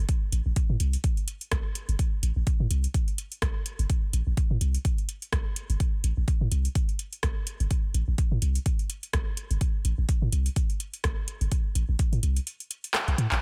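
A punchy sine sub bass anchors this hypnotic, sparse minimal techno excerpt, its deep, pitch-dropping attack sitting up front and pumping against the sidechain while it holds sustained notes. An up-front electronic kick drives the swung groove beneath a booming, overdriven analog drum machine of handclaps, metallic hi-hats and rim clicks, re-recorded in a small room. The dry mix stays in its drop throughout, until the kick falls away at 12.5 seconds and a drum fill closes out the final moments.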